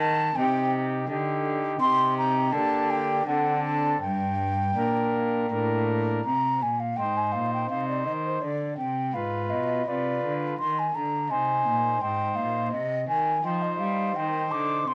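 In a flowing 3/4 at 83 BPM, this grave baroque-style sonata movement with continuo, cut from a longer piece, sets an airy, soft-attacked wooden flute melody up front over a smooth principal-stop pipe organ accompaniment and a single bowed cello whose gut-string bass is dark and reedy, moving from G minor to C minor at 6.2 seconds within a moderate studio reverb under a layer of vinyl crackle.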